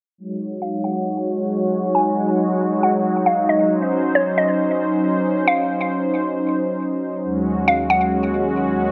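A detuned sawtooth analog pad sits up front with smooth, soft-attack chords that move from Ebm7 to Dbmaj7sus2 and back to Ebm7 at 7.2 seconds beneath a filter sweep, while a woody, round FM mallet-like pluck with a warbling vintage character enters at 0.6 seconds to carry a mellow melody through plate reverb and digital delay, both parts chorused and bathed in wet studio reverb in this spacious, melancholic half-time hip hop fragment.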